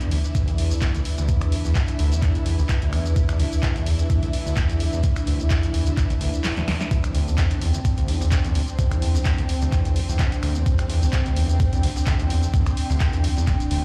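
A squelchy, distorted acid bass riff drives this gritty, trippy acid house excerpt. Its resonant sawtooth tone carries a filter sweep, analog chorus and cassette tape coloring, pumping against an overdriven, thumpy electronic kick that sits up front. Beneath it, a round sine sub bass with tube saturation stays in the background, while a punchy analog drum machine adds finger snaps, handclaps, hi-hat and snare in a short room, the groove swung on the 16ths in 4/4. A lush, vintage string machine holds sustained chords with ensemble chorus, and an ethereal, detuned airy pad floats higher with its own reverb, both breathing with sidechain pumping as a grainy acoustic shekere sits far back in a small room. After a drum fill at 6.4 seconds, a very quiet, compressed soul sampler-style kit adds hi-hat and snare from 6.9 seconds, and the recording sounds as if played on a big sound system in a bare room, set in a large studio reverb.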